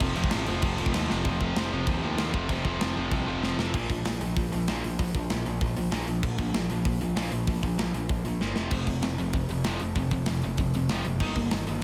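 Rebellious and rowdy, this punk rock passage, cut from a longer piece, charges at 193 BPM in straight 4/4. A bright, overdriven electric guitar riff and a tight, big-room metal drum kit sit up front, with a dark, round fuzz bass grinding underneath. A biting overdriven guitar plays in the background but drops out between 3.7 and 8.7 seconds, while a warm, double-tracked fuzz guitar adds weight for only the first 1.2 seconds, all under light reverb as the chords move from F through Bb5 to end on Eb/G.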